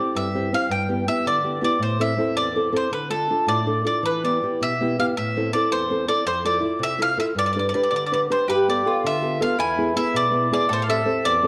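A dark recital-hall production with moderate reverb frames this romantic, lively excerpt of an Italian folk serenade in 6/8, where a warm, double-strung bowl-back mandolin picks the melody up front over a small, fingerpicked nylon-string guitar accompaniment, and a second, round-toned mandolin joins with a supporting line at 8.5 seconds as the chords move toward a closing Am7.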